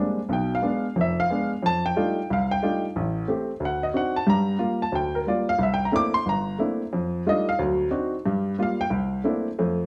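A solo baby grand piano, intimate and up front with audible action noise and a short, natural sustain, carries this playful, warm jazz excerpt in F mixolydian, swinging at 181 BPM in 4/4 across a range from F1 to D6 through a progression of Bdim7, F13, Am7, D7b9, Gm7 and C13 chords, all set in a moderate large-studio reverb for just under 10 seconds.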